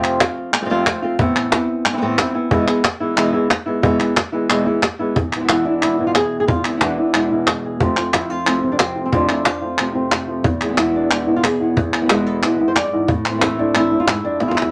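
Set in a short, wet studio reverb, this dramatic, passionate flamenco clip at 182 BPM in E phrygian dominant places everything up front, with crisp palmas hand claps from the start and a woody, hard-handed cajon with faint snares joining at 0.2 seconds. A fingerpicked acoustic flamenco guitar carries the melody with audible finger squeak, and a second fingerpicked guitar adds stabs from 5.2 seconds over chords moving through F, Amadd9 and E before ending on Am. A drum fill at 14.4 seconds closes the passage, which is cut from a longer piece.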